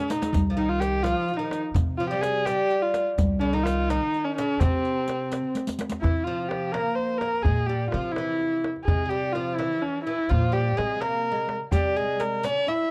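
A drum fill opens this melancholic, soulful Persian modal piece in 6/8 at 84 BPM, as a boxy, up-front bowed kamancheh carries the melody with vibrato and portamento over a bright, plectrum-plucked fretless oud and a dark pizzicato upright bass. A deep tombak played with hard hands runs throughout, and a riq with dark jingles joins it until a second fill from 5.6 s leads into the shift of the mode on C from shur to homayun at 6.0 s; the riq returns at 11.7 s. The sound is a dry, close 1970s-style studio recording with small-room ambience, cut from a longer piece.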